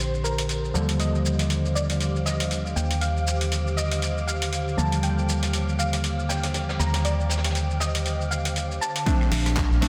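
Opening on a Bbadd9 chord, this relaxed, soulful deep house excerpt at 119 BPM with swung 16ths layers a soft, round pluck melody with chorus and delay, detuned analog key stabs that pump under sidechain, an up-front, hollow, organ-like FM bass, gritty overdriven sampler-style drums with claps, shaker and rim clicks, a nostalgic, warbling tape-like pad, and a silky string machine in the background, with a very quiet brushed jazz kit joining at 0.2 s and a punchy, dry electronic kick arriving only at 9.1 s as the harmony moves to Bbmaj9, inside a dreamy, reverb-soaked mix.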